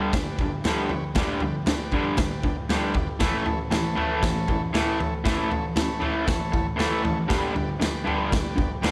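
Garage rock in a rowdy, raw vein, this short excerpt cut from a longer piece runs at 117 BPM in a straight 4/4, sitting in A mixolydian. An electric guitar, bright and overdriven with a picked, double-tracked attack, drives a low riff up front, while an acoustic drum kit of kick, snare and toms comes in at 0.1 seconds with a punchy kick, a medium-tuned snare and a saturated, gritty character. The kit sounds like it was caught in a stone room that pumps, its top end rolled off and its presence close. Behind them a vintage combo organ holds sustained chords in a buzzy, clean tone, tucked into the background. The harmony moves from G to A at 3.2 seconds and back to G at 7.3 seconds, all under a light reverb.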